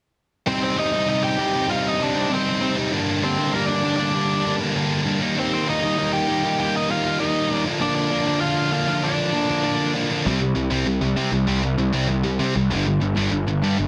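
A straight 4/4 pulse at 196 BPM drives this angry, urgent punk excerpt in C minor, where a sludgy overdriven guitar and a tight, bright distorted guitar play riffs beneath a picked, overdriven lead melody over Cm, Gm, Eb and Bb/D, until the lead stops at 9.9 seconds and a growly fuzz bass enters at 10.3 seconds for a closing stretch on C5 and G5, every part up front in a dense, heavily limited modern master with moderate studio ambience.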